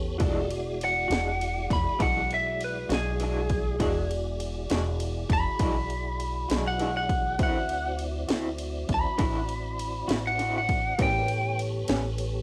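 Recorded at home on cassette with a light reverb, this short cut from a longer slow blues has a swaggering, laid-back mood at 67 BPM in a straight 12/8. A lightly driven lead guitar carries the melody from 0.8 seconds, sitting up front with a slightly broken-up, compressed, picked tone soaked in plate reverb, over harmony that moves from E9 to D9 at 7.4 seconds and on to A9. Underneath, a techno drum kit of kick, ride and snare brings an electronic, layered feel, its punchy kick and cracking snare roughened by overdrive and pushed forward in the mix. A pizzicato upright bass with steel strings adds a woody, dark low end that also stands up front, while a second electric guitar through a small old amp plays fingered accompaniment with a dark, lo-fi, tremolo-laced tone. The tonewheel organ holds sustained chords with a piping, scooped sound, key click, chorus vibrato and a slow rotary speaker, and a clean tine electric piano, given analog chorus and heard through a combo amp, stays in the background.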